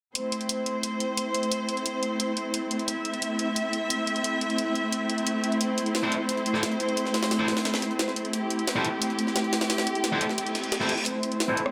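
Set in a lush hall reverb with a digital ambience, this tense, mechanical slice of dark technical drum and bass opens on a rich, bowed studio string section holding sustained A minor chords through a low-pass filter, over a layered electronic kit of hi-hat and rim click in a small room. At 5.6 seconds a gritty, pitched-up jungle sampler-style kit joins with filtered hats and a compressed, medium-tuned snare, and at 6.0 seconds a bright, double-tracked overdriven guitar adds picked stabs with tape echo. An electronic reverse cymbal sweeps in at 10.5 seconds just before the cut.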